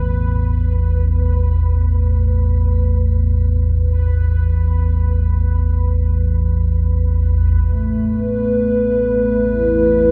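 A deep, ominous drone rumbles up front through this cavernous dark ambient fragment, its detuned, wave-folded sawtooth and triangle tones sitting low and bathed in lush chorus and built-in reverb. Moving in free time around an E5 over A, the piece sits in a huge ambient reverb that gives the space a long, unsettling tail. At the opening, a very quiet quartz singing bowl plays arpeggios in pure, mellow tones from a felt mallet, close and dry, and falls silent at 3.6 seconds. A bubbling, resonant texture of random filter steps hovers higher behind the drone, carried by chorus and shimmer reverb, and fades out before 7.7 seconds. At 7.6 seconds a dark analog pad arrives up front with moody, nasal sustained chords, its square waves doubled by a sub octave and washed in shimmer reverb as the fragment ends.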